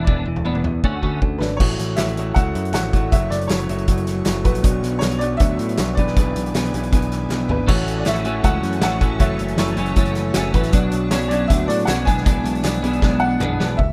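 Rough with little reverb, this home-demo excerpt of wistful, upbeat indie rock in straight 4/4 is driven by a loose, roomy drum kit with a punchy kick, up front in the mix, alongside a bright, direct picked bass. A slightly broken-up electric guitar through a small old amp plays a riff under a brilliant, woody upright piano melody with analog delay, while a clean twelve-string electric guitar with ensemble chorus plays a riff in the opening, drops out and returns at 7.7 seconds. A very quiet vintage string machine of sawtooth violas with phaser holds soft sustained chords from 1.6 seconds, and crisp, dry group handclaps join faintly at 2.0 seconds, as drum fills lead into 1.6 and 7.7 seconds and close out the excerpt.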